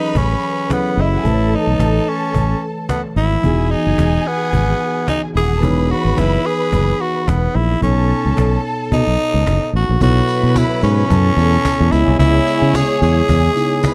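A raspy, gritty tenor saxophone leads from the first second over clear, lush bowed strings, a mellow tine electric piano, a growly, punchy fingered bass and a snappy cajon in this glamorous, celebratory disco excerpt at 109 BPM with a light sixteenth-note swing, moving through F#m11, Emaj9 and B9 chords in a dry, close 1970s-style sound until dark background horn stabs and a jingly tambourine join at 10.0 seconds.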